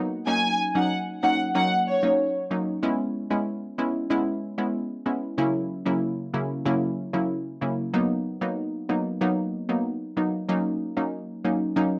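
A straight 4/4 dancehall bounce at 94 BPM drives this bouncy, sultry fragment, where a round, bright analog pluck with chorus carries the chords through the full 12 seconds, moving from D#m7 through C#m7, F#7/C# and Bmaj7, while a lush, vibrato-rich violin section with analog delay sings a brief, expressive melody from 0.3 to 2.0 seconds, all tuned to A4 = 439 Hz and captured as a home cassette recording with tape colour and a moderate studio reverb.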